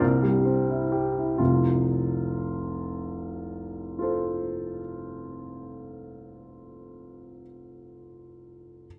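This is a romantic classical character piece for solo piano, lyrical and warm in mood, cut from a longer work in F major and moving in a slow, rubato 6/8 at 46 BPM (dotted quarters). A clear, open baby grand sits up front with long sustain, ranging from F1 to C5. It slows over the opening 1.4 seconds on a C7 chord before settling onto F as the next passage begins, all within a dark production and the 1.6-second bloom of a recital hall.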